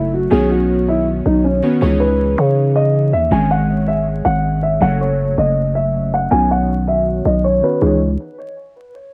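A growling, buzzy 808-style bass sits up front with a fast attack and decaying tail, anchoring this brooding, hard-hitting trap and hip hop piece in C# minor at 160 BPM with a half-time feel in 4/4, tuned to A4 = 438 Hz. A dark, boxy concert grand piano carries the melody, its mellow tone given deep low end and softened by a low-pass filter. Underneath, glassy digital keys supply airy, detuned accompaniment with chorus and a noise layer, and a filter sweep runs across them from 1.8 to 7.8 seconds. The harmony moves through Badd9, C#madd9, G#sus4 and F#m before returning to Badd9 and landing on C#madd9 at 7.8 seconds. Light reverb, cassette-style home recording grit and vinyl crackle give the sound a lo-fi haze, and the passage is cut from a longer piece.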